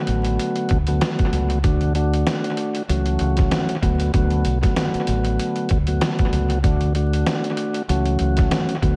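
A mellow tonewheel organ sits up front in this moody, dark boom-bap hip-hop excerpt, its soft, flute-like tone carrying a key click and the slow churn of a rotary speaker, trimmed by high- and low-pass filtering. It opens alone at 0.0 s, joined at 0.1 s by a deep dub fingered electric bass whose round, punchy notes stay low between A1 and D2. A trip hop sampler-style drum kit also enters at 0.1 s, gritty and pitched down, with a thumpy kick, a medium-tuned snare and hi-hat, all compressed and trailed by tape echo. The groove moves at 96 BPM in 4/4 with a loose 56% swing on the sixteenths, cycling through Bm7, D and F#m7/C# twice over nine seconds. The echo-heavy mix carries light reverb and a layer of vinyl crackle, lending the whole fragment a dusty, late-night haze.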